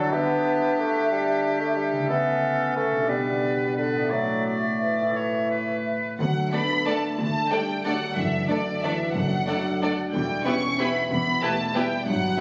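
Festive and elegant, this excerpt from a longer orchestral ballroom waltz in D major sways in 3/4 at 164-199 BPM with a rubato feel, tuned to A4 = 445 Hz. For the first 6.2 seconds the woodwinds carry the music: a bright oboe, a hollow concert flute and a distant, roomy clarinet weave second lines while a clear bassoon supplies accompaniment, over a mellow, ringing harp whose fingerpicked arpeggios run through to 12.4 seconds. At 6.2 seconds the strings take over, with a lush violin section singing the expressive, vibrato-rich melody up front, and at 6.5 seconds a second group of violins and a rich viola section join with smooth, even inner lines. Beneath them, a dark French horn section holds sustained chords, and warm cellos and woody double basses anchor the bass in the background. The harmony moves from Em7/D through A/C# and G/B to Asus4 and A, then settles on D, D/F# and Em. A wet concert hall reverb surrounds the ensemble, and the sound carries the character of a phone recording made in the room.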